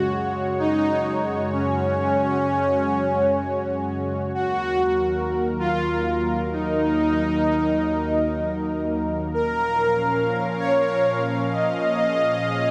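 Driving and nostalgic, this synthwave excerpt moves at 96 BPM in Eb minor, cut from a longer piece and running under 13 seconds. A smooth, detuned supersaw carries the melody up front through phaser and tape echo, while a thick, chorused unison pad with slow attack and long release holds sustained chords from Eb2 to F5. The harmony opens on Gbsus2, shifts to Ebm at 4.3 seconds and reaches Bbm at 9.3 seconds, all bathed in a lush hall reverb.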